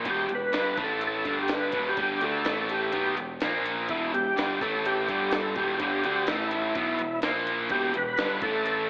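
A big arena sound soaked in wet scoring-stage reverb, yet filtered with an AM-radio narrowness, frames this gritty, driving classic rock excerpt in straight 4/4. Up front, a bright, double-tracked distorted electric guitar picks a riff from E2 to D4 with slapback echo, circling chords such as Em, A5, G5 and A#5. Beside it, a thick, overdriven tonewheel organ carries the melody between E4 and B4, its slow rotary speaker, chorus vibrato, key click and second-harmonic percussion giving it a percussive bite. Underneath, a growling picked electric bass, direct and amped with overdrive, holds the low end. A compressed, pitched-up jungle sampler-style drum kit adds a thumpy kick, a medium-tuned snare and hi-hat, and all four parts run together from the opening through about 8.9 seconds.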